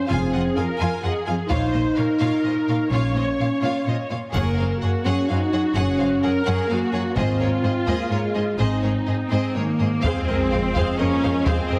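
A heavily compressed, radio-like sound in a moderate scoring-stage reverb frames this heroic, dramatic epic orchestral film score cue in F phrygian at 127 BPM in 3/4, where a lush violin section carries the melody over a second violin line with soft portamento, distant viola accompaniment, up-front cellos and an intense double bass section, dark French horns sustain chords over Fm, Bbm, Gbadd9 and Ab, close, dry taiko enters at 1.5 seconds, a very quiet triangle glints briefly, and at 10.0 seconds a huge sub drop impact arrives with roomy, very quiet trombones as the cut-off passage returns to Fm.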